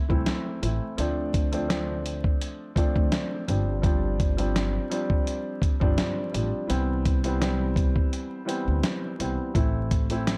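Reflective and gritty, this boom-bap hip-hop excerpt sets a dark, mellow concert grand piano, up front with audible action noise and a cassette-tape tint, over a woody, growly pizzicato upright bass and a compressed, sampler-style drum kit with a thumpy kick, medium-tuned snare and hi-hat. The swung groove moves through Am, Dm7, G7sus4 and Cmaj7 before returning to Am at 9.5 seconds, with a break from 8.1 seconds. A dry, hardware-recorded sound in a small room, laced with vinyl crackle, gives the whole cut a dusty grain.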